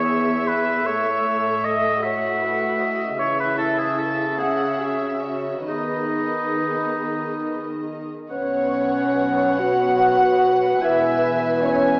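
Heard through worn, warbling cassette tape on a small speaker and bathed in concert hall reverb, this moving, uplifting cinematic film score in a rubato 6/8 sets a floating, sul tasto violin section on the melody over a second violin line, a distant, roomy oboe, dark, woody violas and pure cellos on the bass, until at 8.3 s an airy, hollow flute group, a vintage-toned clarinet, a tight, mellow French horn section holding chords and a soft-attack double bass section join in.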